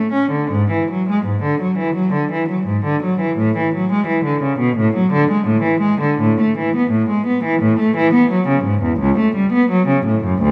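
A single bowed cello sits up front with a rich, reedy gut-string tone and light vibrato, played in period style across a range from C#2 to C#4. This radiant, serene baroque-style suite movement for unaccompanied cello unfolds in A major at 85 BPM in 4/4, with a flexible rubato feel through its 10.5 seconds, cut from a longer piece. Moderate scoring-stage reverb and a dark production surround the instrument.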